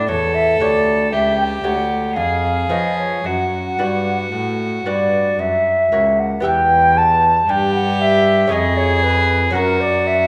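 A moderate recital-hall reverb surrounds this short, introspective and solemn fragment of a baroque-style sonata movement with continuo, moving at 58 BPM in a straight 3/4. The violin carries the melody with an airy bow and gut-string tone, while a pure, wooden baroque flute sits slightly more prominent on the second line. Beneath them, a distant, nasal, reedy cello holds the bass and a delicate, fingerpicked lute with double strings adds soft accompaniment, all four playing throughout until a new passage turns toward E minor at 6.4 seconds before settling on F sharp.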